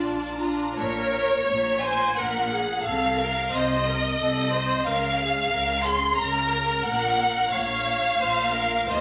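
Classical music for string orchestra, this slow romantic movement is warm and serene, moving in a flexible, rubato three-time that breathes freely around the beat. A violin section carries the melody up front, its expressive, vibrato-laden tone shaped with a soft attack, while a second violin line sits very quiet beneath it with a smooth, focused top. Violas fill in the accompaniment with a lush, bowed sound, and a distant double bass section anchors the harmony with an even, lightly vibrating bass. The cellos join at 0.8 seconds, deepening the low end with their full, focused voice as the harmony settles into a minor colour and moves through gently shifting chords. The ensemble sits in a wet stone room with a moderate reverb tail, and a vinyl crackle lends the passage, cut from a longer piece, an aged, intimate patina.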